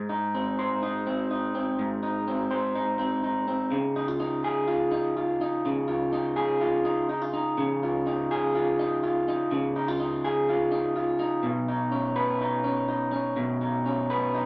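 Indie pop with a youthful, breezy mood, this short passage cut from a longer piece features a solo electric guitar played through a small old amp. The guitar is picked, bright and twangy, with a slightly broken-up edge, and it sits up front in the mix. It plays for the full 14.5 seconds, moving through chords of Ab, then Dbadd9 at 3.7 seconds and Cbadd9 at 11.4 seconds. The sound carries the air of a small room, with a wet reverb that gives it a live feel. The straight, steady pulse in four keeps the mood light and easygoing.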